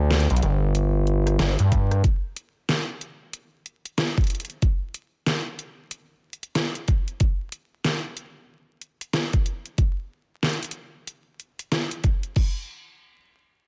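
A swung 4/4 groove at 93 BPM, with a 61% lilt on the sixteenths, drives this funky, playful glitch hop excerpt, cut from a longer piece. An overdriven pop drum kit starts at 0.1 seconds with crash cymbal, hi-hat, rim click and a deep snare, sounding layered and up front as if re-recorded in a small room. A gritty, aggressive synth bass built from sawtooth and sine tones with oscillator sync occupies the opening, G1 to G2, its resonant filter pluck and fast attack giving way to a sustained, tube-saturated body before it drops out at 2.0 seconds. A knocking electronic kick joins at 1.7 seconds, also overdriven and close, carrying the beat with the kit through 12.5 seconds. The mix is dry with little reverb, and a layer of vinyl crackle adds a dusty grain beneath the parts.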